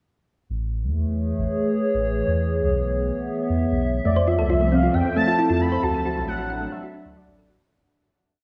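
This short, intricate and glitchy IDM piece opens with a deep, round sub bass at 0.5 seconds, skipping through a syncopated line in a straight 4/4 groove. A warbling, tape-like pad follows almost at once, its detuned, lo-fi chords swelling in slowly and lingering with a nostalgic, dark haze as they shift from Amaj7 to E and on through Fmaj7 and D. At 4.1 seconds a tine-like, thumb-piano-style pluck enters with gentle, decaying arpeggios, a 14-step loop drifting against the bar. At the same moment a velvety, smooth synth lead enters with mellow arch-shaped motifs that glide between notes. Both the pluck and the lead sit in a diffuse ambient delay, and the whole dreamy mix is soaked in a huge, long reverb before a fade-out that begins at 5.2 seconds.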